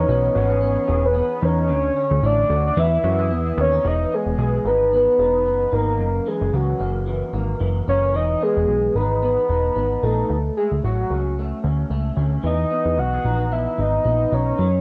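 Worn, warbling cassette tape gives this laid-back, hazy bedroom pop clip its drifting pitch, set in a moderate spring reverb that lends the room a soft bloom. A soft, octave-layered synth lead carries the melody up front, its round, full tone detuned over a sub octave, with a lush chorus and a gentle vibrato. Beneath it, an electric guitar played through a small old amp sits low in the mix, bright, twangy and slightly broken-up, its picked accompaniment thickened by an ensemble chorus and a vibrato effect. A plucky analog bass anchors the bottom with a punchy, funky, dark tone, its fast-attack filter pluck decaying under a moving notch. All three parts play from start to finish of this cut from a longer piece, over a lightly swung groove that moves through Emaj7, Dmaj7 and F#7, with a new section arriving at 3.8 seconds.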